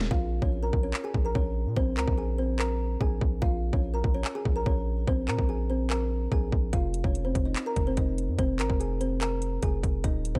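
A woody, thumb-plucked kalimba carries the melancholic melody over a hard-hitting half-time trap groove at 145 BPM in Bb minor, with a deep, sine-toned 808 bass holding long, decaying notes and an up-front electronic drum kit of hard-clipped kick, sharp snare, handclaps and 12-bit sampler grit, its metallic hi-hats muted until 6.7 seconds, when the harmony moves from Bbm7 to Fm7 inside a dark digital ambience in this short excerpt cut from a longer piece.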